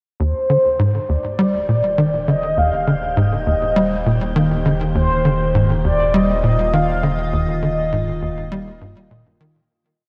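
Drenched in a lush hall reverb with a 2.5-second tail, this short piece of sequencer-driven space music sounds dreamy, cosmic and expansive, moving at 101 BPM in a straight 4/4 in Eb major and opening on an Eb6 chord. Up front, a tight, punchy sequencer bass drives an eight-step repeating riff, its nasal filter pluck coated in lush chorus and delay. A mellow, horn-like lead with a wave-folded tone, vibrato and a subtle chorus and delay sings a free melody between C5 and F5, while a deep, round analog bass holds a dark, sustained Eb1 root beneath. A breathy, wind-like noise texture enters in the background at 1.6 seconds on a held high G5, and at 1.8 seconds an evolving wavetable pad brings slowly shifting chords that morph through chorus, phaser and the pad's own reverb. The pad, analog bass and texture each fade in gradually, and the piece fades out from 6.5 seconds to its close.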